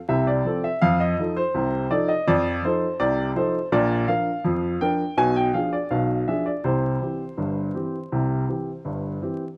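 A dry, close sound in the manner of a 1970s studio carries a layer of vinyl crackle, with just a light touch of small-room reverb around the instrument. This is a short stretch of ragtime cut from a longer piece, playful and cheerful in mood, set in a straight two-beat metre. A single upright piano plays solo from 0.1 to 9.4 seconds, its tone woody and natural with a long sustain, sitting up front in the mix. The part ranges from G1 in the bass to G#5 in the treble. The harmony moves from F to F7, then through Bb and Bdim7 before arriving on C, giving the passage a sense of motion toward its close.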